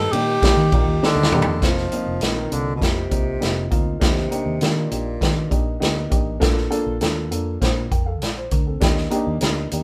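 A straight 4/4 groove at 100 BPM drives this joyful, danceable slice of uptempo 1960s-style soul in F mixolydian, where a breathy, close-miked tenor saxophone with scooped notes carries the melody until 5.8 seconds over a dark, woody, slightly detuned upright piano, a round, punchy foam-muted electric bass, and an up-front, roomy big-band drum kit with a boomy kick that plays a fill from 1.0 to 1.6 seconds, all captured as a band playing live in one room with light reverb, moving through Eb, F7sus4, Ebmaj7 and Bbmaj7.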